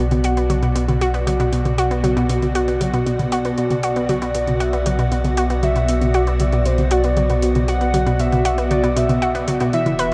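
Ambient, sequencer-driven space music at 117 BPM in B minor, this hypnotic, mysterious excerpt rests on a single Bm chord, where a morphing, detuned wavetable pad holds sustained chords and a round, nasal analog pluck sits up front with a riff soaked in chorus, shimmer reverb and tape echo. A deep sine sub bass anchors the low end, while a soft vintage rhythm box taps overdriven metallic hi-hats and toms beneath. At 3.6 seconds a shimmering, retro pulse-width lead enters with vibrato and echo, all set in a vast, echoing space with a cassette-tape grain.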